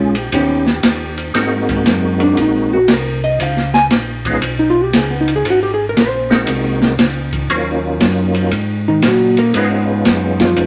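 A clean, dark hollow-body electric guitar sits up front and takes a fingered solo from 1.4 seconds onward in this greasy, bluesy soul jazz organ trio cut from a longer piece. Beneath it, a round tonewheel organ carries the melody with third-harmonic percussion and chorus vibrato, while a second, mellow tonewheel organ handles the bass line with a touch of key click; both organ parts turn through a slow rotary speaker. An acoustic drum kit enters at 0.1 seconds with hi-hat, ride, snare and a boomy kick, its cymbals dusky and its top end rolled off, giving a small-room feel. The groove swings in 4/4, moving through dominant ninth chords such as Ab9 and Db9, with an Ebm7 and an Absus2 near the close. A moderate studio reverb wraps the trio in a short, natural-sounding space.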